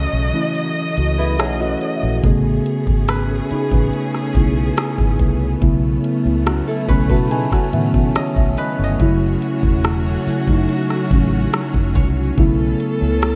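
This longing, sensual slice of contemporary R&B at 71 BPM opens on muted, felt-like synth keys with a soft, dark chorused tone, lush bowed strings holding sustained chords, and a round, foam-muted electric bass, before a polished drum kit with a knocking kick, metallic hats and rim clicks arrives up front at 0.6 seconds. Fingerpicked nylon-string guitar arpeggios with audible finger squeak and a touch of tape echo weave through from 1.2 to 8.8 seconds, while a silvery, ringing guzheng sits in the background from 3.1 seconds onward. The harmony drifts from F#m7 through Amaj9 and B9sus4, with the synth keys adding fills, all wrapped in a light studio reverb.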